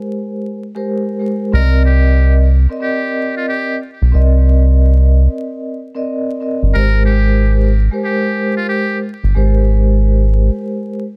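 Boom-bap hip-hop with a reflective, dark mood, where a mellow vibraphone with soft mallets and motor vibrato rings through cassette-tape grit and plate reverb from the start, a deep, round analog bass sits up front from 1.5 seconds, and a buzzy trumpet with a metal mute plays a brief jazz-style solo with scooped notes and delay until 9.0 seconds, beneath a layer of vinyl crackle.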